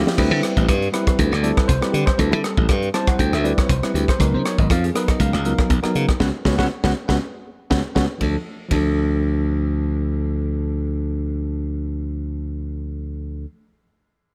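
This intense, slick slice of electric jazz fusion opens with a fill on bell-like tine electric piano and a drum fill together, over a glassy slap bass that sits up front with a growly, punchy edge. At 120 BPM in 4/4 with a light swing on the sixteenths, the groove sits in D dorian, moving from a D13sus4 chord to C#13sus4 at 4.2 seconds before settling on D minor. The crisp fusion drum kit is gritty and saturated, with a high-tuned snare, a punchy kick, and crash, ride, hi-hat and rim clicks ringing in a pumping small room. The band hits a run of accents, and another drum fill arrives at 7.7 seconds. The drums stop at 8.9 seconds, leaving the clean, direct electric piano playing over the bass in light reverb as the passage moves into its next section.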